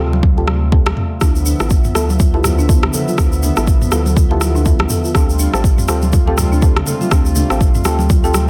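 The recording opens on a smooth, warbling analog pad holding sustained chords and a dark, nasal chord stab tucked into the background, both carrying chorus and sidechain pumping, with a round sine sub bass pumping beneath them from 0.0 seconds. This is a hypnotic, earthy afro house passage at 122 BPM in 4/4, swung at 58% on the sixteenths and set in D dorian, moving from Fadd9 to Dm69 at 1.2 seconds and back to Fadd9 at 5.1 seconds. Bright, thin-skinned congas sit in the background, while a deep, tape-warm electronic kick drum sits up front and a layered deep house kit adds rim clicks, toms and a soft-clipped snare. At 1.2 seconds a woody, rustic marimba played with soft mallets enters with arpeggios touched by tape echo and sidechain pumping, joined by a grainy tube shaker with a live-room feel. The dense, heavily limited master and studio reverb wrap this short section cut from a longer piece.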